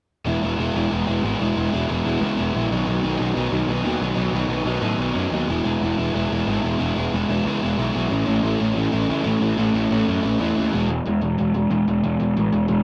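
An up-front, double-tracked overdriven semi-hollow guitar drives a hollow-bodied riff through this rebellious, upbeat straight-feel punk excerpt, joined at 0.3 seconds by a bright, growly fuzz bass, all set in a rough rehearsal-room recording with moderate studio reverb as the chords move from E through B and A before returning to E at 10.7 seconds.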